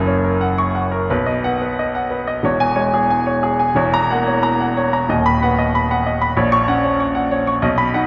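A clear, worn grand piano sits up front in a wet scoring-stage reverb, playing this brief fragment of a romantic character piece for solo piano in B major. The mood is lyrical and warm, moving in 2/4 at around 86-96 BPM with free rubato, as the piano spans from low D#1 to high C#6. After an opening on F#, a new passage begins at 1.1 seconds on B and passes through C#m/E, F#7/E and B/D#, settling on F#/A# at 6.4 seconds.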